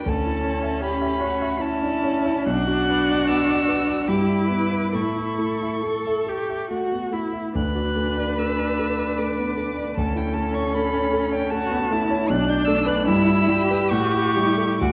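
Lyrical and warm, this slow romantic piano-quartet movement in a rubato 3/4 at 66-79 BPM, cut from a longer piece, sets a focused, smooth-topped violin melody with vibrato high above a rich cello second line that glides with portamento and soft attacks, while an expressive bowed viola and an up-front, dark, mellow concert grand with deep bass supply the accompaniment through chords moving from A/D to Bm, Em/G and a closing A7, all bathed in a recital hall's reverberant glow.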